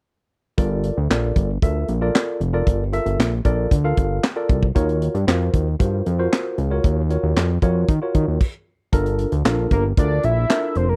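A tight funk drum kit sets a straight 4/4 groove at 115 BPM, its high-tuned snare, tight kick, hi-hat, handclaps and crash cymbal sounding natural and up front in a small room. This early-eighties boogie funk excerpt has a funky, late-night mood, moving from Gm9 to Ebm9 and back to Gm9. A fat, thick analog bass with a detuned sawtooth tone, fast attack and filter sweep sits prominently beneath a worn, slightly out-of-tune tine electric piano, lightly overdriven as if through built-in speakers. After a brief stop at 8.4 seconds, the groove returns, and at 9.7 seconds a mellow analog lead enters up front, its square-wave and sub-octave body colored by chorus, phaser and vibrato. The close, dry 1970s-style studio sound keeps every part present.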